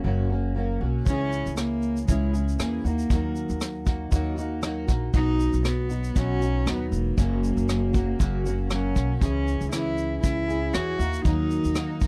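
A double-tracked, fingerpicked steel-string acoustic guitar with a dark, full-bodied jumbo tone on old strings opens this heartfelt, easy-going acoustic pop piece at 118 BPM, joined from the start by a thumpy pizzicato upright bass. At 1.1 seconds a close, bowed cello with vibrato enters to carry the melody, alongside a vintage brush kit with a punchy kick, rim click and shaker, its top end rolled off and a small room's natural sound around it. The dry, close 1970s-style studio sound keeps every part up front as the chords move through F#, C#m, D#m and B with a lightly swung sixteenth-note feel, before the fragment cuts off.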